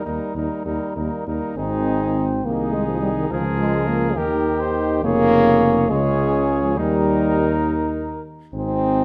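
This classical brass quintet excerpt moves at a slow, rubato 68 beats per minute in 6/8, set in A-flat major with a noble, warm character. A mellow cornet carries the melody with light vibrato and a soft attack, while a clear flugelhorn sings a second line just beneath it. The French horn, smooth on top and sitting prominently in the blend, shares the accompaniment with a trombone that sounds distant and roomy in the background. The bass trombone joins at 0.1 seconds, up front with gentle vibrato, anchoring the low end. After a brief opening phrase, a longer passage begins at 1.6 seconds, moving through harmonies such as Bbm7/Db, Db/F and E-flat before settling on A-flat at 8.5 seconds. A moderate recital hall reverb gives the ensemble a natural sense of space.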